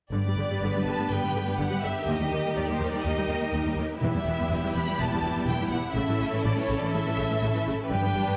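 A straight 4/4 pulse at 124 BPM drives this heroic, triumphant cinematic cue in G lydian, moving through G, Eb, Em and A chords. Lush violin sections with soft attack and expressive vibrato sing the melody and a second line above a smooth, even viola accompaniment. Focused cellos and distant double basses hold the bass, while a mellow, thumb-plucked concert harp rings out arpeggios in the background, the whole ensemble set in a recital hall reverb.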